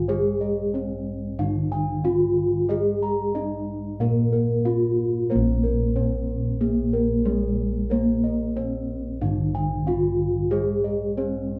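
Two bronze metallophones and a set of low bossed gongs open this ceremonial gamelan excerpt together. The melody metallophone rings mellow and soft under padded disc mallets, its paired tuning producing shimmering beats in a vintage, band-limited tone, while the quieter accompanying metallophone sounds boxy and warm. The bass gongs sit up front, round, dark and smooth; from 0.1 s a higher set of bossed gongs adds quiet, beating arpeggios with a small-room colour, the whole band playing live in one room under moderate reverb in a straight 4/4 feel.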